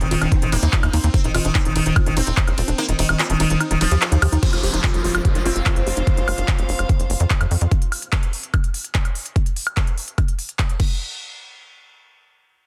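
A dense, heavily limited psychedelic trance excerpt at 146 BPM in 4/4 with a hypnotic feel, where a buzzing, bright sitar melody with phaser, tape echo and sidechain pumping rides over a punchy sawtooth sequencer bass, an overdriven knocking kick that drops out from 2.8 to 4.4 seconds, a techno kit of smooth hats, handclaps, ride, crash and woodblock, a woody wave-folded pluck riff with chorus and delay, a very quiet morphing wavetable pad, a brief nasal wobble bass line in the background, and, from 4.4 seconds, an earthy bowed chamber string section joined by a background downlifter while a filter sweeps the synth arpeggio.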